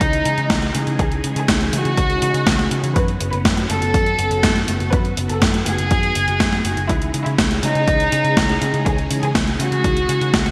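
Brilliant 1980s-style digital production with vinyl crackle and a lush hall reverb frames this danceable, melodramatic italo disco excerpt in C# minor at 122 BPM, where an earthy chamber violin section with light vibrato carries the melody through digital delay and shimmer reverb over a swirling, sawtooth string machine with phaser and ensemble chorus, a dark, round, foam-muted picked electric bass with tube saturation, a punchy analog kick, and an overdriven, sampler-style drum machine whose hi-hat and gated-reverb snare sit up front, as the chords shift from C#madd9 to F#sus4 at 3.0 seconds and back at 6.9 seconds.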